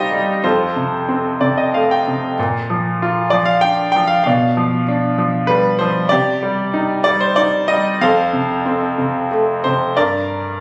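Captured on a phone in the room with a light touch of reverb, this excerpt from a longer piece presents a bright concert grand up front, its worn tone, deep bass and audible action noise giving an intimate feel. The lyrical classical solo moves in a rubato 3/4 around 95 BPM, tuned to A4 = 439 Hz, and spans F2 to G5 with a sunny, warm mood. A short fill from 1.1 to 2.4 s decorates the opening as the harmony passes from F through Bb, G7/B and Cmadd9 back to F, reaching Gm at 10.0 s.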